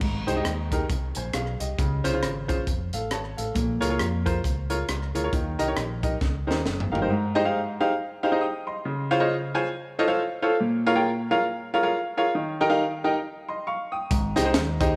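A clear, up-front baby grand piano carries this uplifting, jubilant uptempo gospel excerpt in Ab major, playing accompaniment from start to finish at 136 BPM with a swung eighth-note feel. For the first 7.1 seconds it is joined by a deep, round, dark electric bass played fingered and a crisp acoustic fusion drum kit with bright cymbals, a high-tuned snare and a punchy kick, and the drums close that opening with a fill before dropping out. The piano then carries the next passage alone, its short natural sustain set in a moderate reverb like a large scoring stage. Bass and drums return at 14.1 seconds on the Abmaj7 just before the cut. The harmony cycles through Abmaj7, Dbmaj7, F, Bbm7 and Eb, with an F(b13) adding colour the second time around.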